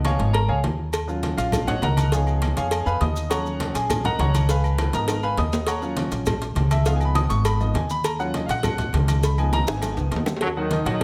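A driving, passionate salsa groove in straight 4/4 rides on tight, high-tuned cowbell and bongos, ringing metal-shelled timbales and agogo bells, low-tuned congas set back in a large room, and grainy maracas in the background, with drum fills around 5.1 and 9.7 seconds. Up front, a clear, worn grand piano with long sustain solos over a woody pizzicato upright bass as the harmony alternates between Db7 and Ebm7. At 10.4 seconds, a brilliant trombone section with light vibrato enters just before this cut from a longer piece ends.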